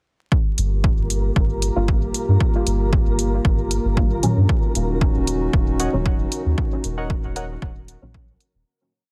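Dense and heavily limited, with a dry room and a layer of vinyl crackle, this short dub techno piece moves at 115 BPM in G minor with a hypnotic, nocturnal mood and a light swing on the sixteenths. A punchy, tape-warm kick sits up front in four-on-the-floor time beside programmed closed hi-hats and backbeat, while a soft, round sub bass plays a dotted rhythm beneath them. A dark, nasal analog pad with slow attack holds sustained chords, moving from Gm7 to Ebm7 at 4.5 seconds, and a grainy, flickering texture holds a single high note under its own reverb. From 1.8 seconds, deep, mellow chord stabs with chorus, phaser and dub echo move one shape in parallel, and the bass, pad, texture and stabs all pump with the kick. Detuned, warbling lo-fi synth keys add a brief, nostalgic riff of echoing chords as the track fades out from 5.9 seconds.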